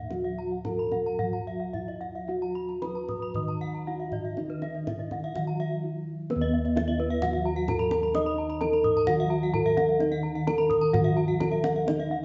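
Balinese gamelan with a hypnotic, shimmering mood, cut from a longer piece, where paired-tuned bronze metallophones ring with beating shimmer. An airy, mellow melody on padded disc mallets sits over a dark, smooth accompaniment in the background, round bossed gongs carry the bass up front, and two arpeggio lines sparkle above, one struck with a wooden mallet and one with a horn mallet that sounds bright, full and close. A deep, dry kendang plays a fill at 6.0 s, a pure bamboo bansuri with vibrato drifts in the background from 2.8 to 5.8 s, and the whole band plays live in one room under a generous studio reverb.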